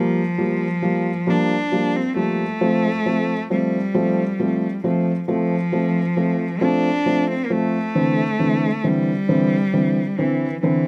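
A gentle, unhurried six-eight sway carries this tender, romantic pop ballad fragment, with a bowed solo cello singing the melody in a rich, close voice with smooth vibrato. Beneath it, a felt-muted upright piano plays a mellow, dark, intimate accompaniment, its vintage character marked by audible action noise and a slapback echo. Both sit up front in a light reverb as the harmony moves from Gm7 to F and settles on Cadd9 at 8.0 seconds.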